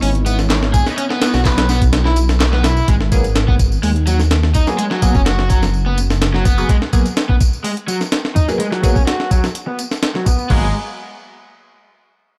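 A dark, lightly reverberant production frames this gritty, raw breakbeat excerpt at 126 BPM in G# minor, where a compressed, pitched-up sampler drum kit with a thumpy kick, medium-tuned snare, hi-hat and crash sits up front beside low-level analog tambourine and handclaps, a rumbling, detuned saw bass holds the low end until 6.6 seconds, and a very quiet, mellow pad sustains a C#m9 chord as the kick briefly drops out. An overdriven, picked garage guitar riff with delay runs throughout and takes on a filter sweep at 2.9 seconds over G#m9, while a nasal, band-passed chord stab, entering at 0.9 seconds, adds bright, phaser-coloured plucks.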